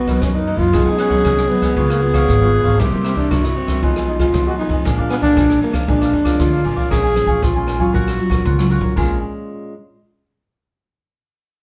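A close-miked trombone with vibrato sings the yearning melody of this nostalgic samba and choro fragment at 117 BPM, shadowed by a classical-style clarinet on a second line until the trombone drops out at 6.6 s. Beneath them, a bright, fingerpicked nylon-string guitar with audible finger squeak, a crisp picked cavaquinho and a woody pizzicato upright bass fill out the harmony, while a jazz drum kit played with brushes adds dark cymbals and a boomy kick. The music settles into Bb minor from 6.9 s, heard through a wet studio reverb from further back in the room.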